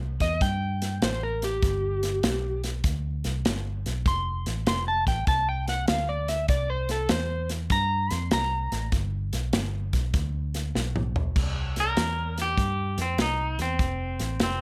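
A slightly broken-up, dark electric slide guitar stands out in this soulful, rollicking electric blues shuffle, taking a solo in the upper register from the opening moments until it stops at 8.9 seconds. Underneath, a vintage fingered electric bass with a foam-muted, round tone holds the low end throughout, while a natural country drum kit with a punchy kick, medium-tuned snare, hi-hat, crash and toms keeps a swung 4/4 at 99 BPM and plays a fill just before the change at 11.4 seconds. In C mixolydian, the chords move through C6, G, F6, C and G before shifting to C7 and F in the closing section. At 11.8 seconds a clean, twangy electric guitar with a scooped, picked sound enters with the melody in its middle range. Moderate club reverb surrounds the up-front parts, and the drums carry an airy, polished studio-room sound in this short cut from a longer piece.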